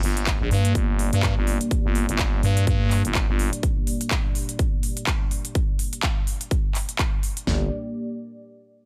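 Bass house with a swaggering, aggressive edge, cut from a longer piece and driven by a layered big-room electronic drum kit whose punchy kick, huge snare and toms sit up front beside crisp handclaps and hi-hats. A growling, thick FM bass with tube saturation and sidechain pumping drops out at 3.5 seconds and returns at 7.5 seconds. Beneath it, a deep, moody analog pad of detuned sawtooth chords with a sub octave carries chorus, vintage 12-bit sampler grit, its own sidechain pumping and a filter sweep, all set in a digital ambience.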